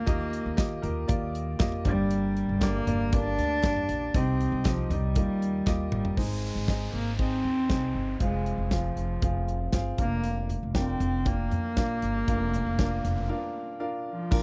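A dry, close studio sound in a 1970s style with light reverb frames this hopeful piano-driven pop excerpt at 118 BPM in 4/4. A bowed, reedy cello with a nasal gut-string tone carries the melody over clear, woody upright piano, growly pizzicato upright bass on steel strings, and a punchy, mid-forward drum kit with a rolled-off top. Very quiet, crisp group handclaps run until 5.8 s, electronic downlifter and riser effects appear from 6.2 s as the chords move through Ab, Fm and Bb/F, and a break arrives at 13.3 s.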